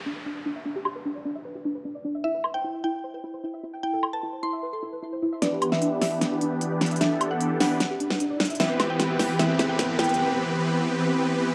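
The huge, detuned supersaw chords dominate this dreamy, lush future bass passage, entering up front at 5.4 seconds with a bright, sustained riff under a filter sweep and a vintage 12-bit sampler grit as the music builds. Set at 151 BPM in 4/4 with a half-time feel in E minor, the piece opens on a soft, round pluck playing arpeggios through analog chorus and delay, its own filter sweep shaping the first section, while a downlifter marks the start. A woody, mallet-like FM pluck carries the mellow melody from 2.2 seconds, coloured by chorus and delay. The layered electronic pop drum kit brings a fat snare, crisp filtered hats and woodblock, playing a fill through the build-up as a riser climbs from 7.8 seconds. The harmony moves through chords such as Cmaj7, Amadd9 and Em7, all bathed in a lush hall reverb within a dark, warm production, and the excerpt is cut from a longer piece.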